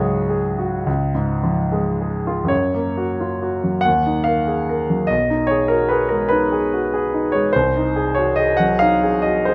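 A polished grand piano plays alone from the start, sitting up front with a light reverb, in a serene, nostalgic romantic nocturne that flows in a slow, rubato 12/8 across a range from B1 to F#5. It opens on a suspended C# chord that settles onto C#, then at 2.5 seconds moves into a new passage through F#, D# minor and G# minor over B, before arriving on G#7 over B# at 7.5 seconds. This brief, clear passage is cut from a longer piece.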